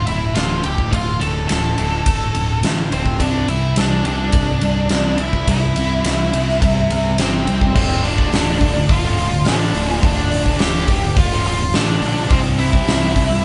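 Quiet-loud alternative rock in D minor at 106 BPM, dark and angsty, where an up-front, dark octave-fuzz lead guitar with distortion and analog delay carries the melody over a background fuzz guitar riff, a growly overdriven fingered bass and a huge arena drum kit with a fat snare, punchy kick and bright cymbals, while a bright, twangy twelve-string electric guitar plays phaser-tinged arpeggios only until 3.2 s, when a very quiet thick fuzz guitar joins the riff, all captured as a band playing live in one room with moderate studio reverb.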